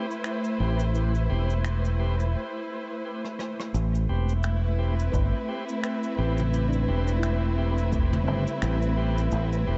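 Drenched in cathedral reverb and dulled to a dreamy haze, this deep, hazy ambient dub fragment rests on lush, vibrato-rich symphonic strings holding sustained chords up front, beside a round, dark fingered electric bass. A shouting, lightly overdriven tonewheel organ jabs stabs through a stopped rotary speaker, filter and dub echo, while a brushed jazz kit with cabasa, finger snaps, rim clicks and toms swings softly, pausing for a break before a drum fill at 3.2 seconds. At 5.1 seconds a ringing, meditative handpan adds close-miked arpeggios in the background, and a deep, layered electronic kick thuds underneath until 8.1 seconds.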